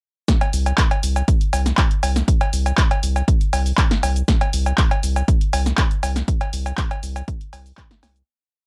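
Acid house at 120 BPM in a hypnotic, gritty 4/4 groove, where an up-front, tape-warm four-on-the-floor electronic kick and a punchy analog drum machine of snare, handclaps, open and closed hi-hats, shaker and cowbell (a short room around the snare, clap and hats) drive over a deep, thick, saturated off-beat sub bass around C2 with sidechain pumping, all captured as a dry, gritty cassette-tape hardware recording that stays in a drop from 0.3 seconds and fades out from 5.6 seconds to the end at 8.3 seconds.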